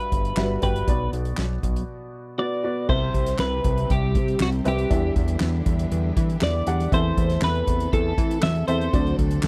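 Driving and bittersweet, this piano-driven pop excerpt moves at 119 BPM in a straight 4/4 in E minor, with a dry, close 1970s-style studio sound. A clean, picked twelve-string electric guitar carries the melody up front, its compressed tone ringing from F#4 to E5, while a clear, woody upright piano, worn and slightly detuned, fills out the accompaniment. Underneath, a fat analog bass with a sawtooth and square-wave character, detuned and touched by ring modulation and a filter sweep, sits up front with a fast attack and sustained notes. The soft-mallet drum kit has a boomy kick, a fat snare, hi-hat, crash cymbal and handclaps, with soft mallets on drums and cymbals giving it a big-room acoustic feel. A break arrives at 1.9 seconds, and at 2.9 seconds a lush, bowed string section enters in the background with smooth, even sustained chords and vibrato as the harmony moves through Cmaj7, Em7 and Am/E toward D7.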